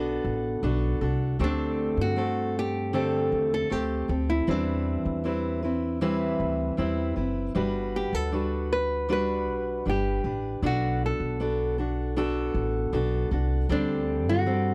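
A dry, close recording in a 1970s studio style with light reverb, this carefree, heartfelt acoustic pop fragment in G major moves at an unhurried 78 BPM in straight 4/4, cut from a longer piece and running 14.7 seconds. A small-bodied nylon-string guitar carries the fingerpicked melody between D4 and B4, while a dreadnought steel-string acoustic guitar fingerpicks a warm accompaniment and a woody, dark pizzicato upright bass anchors the low end, all three sitting up front for the whole passage. The harmony drifts from Bm7 to D7sus4, then through Cmaj7/E and Gmaj7 before circling back to Bm7 and D7sus4.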